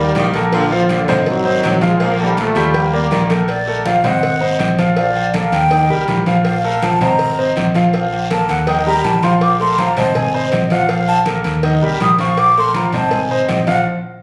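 A breathy, mellow jazz flute carries the melody from 3.5 seconds onward, its close-miked, soft-edged tone given a slapback echo as it solos over this festive, danceable salsa excerpt in Bb major at 162 BPM. Before it enters, a bright, punchy trombone section states the opening melody, with a clear saxophone section with light vibrato sitting in the background on a second line; both horn sections stop at 3.3 seconds. A clear baby grand piano plays accompaniment up front throughout, intimate and natural with long sustain and audible action noise, while a deep, dark, round fingered electric bass anchors the low end. The percussion bed combines bright, hard-handed congas and ringing, compressed, saturated timbales with agogo bells in the background, a raspy guiro, and a very quiet, low-tuned cowbell. The harmony cycles through Eb, Bb and Ab colours, and the band hits a final accent at 13.9 seconds, all heard through moderate reverb in a phone-recorded club room.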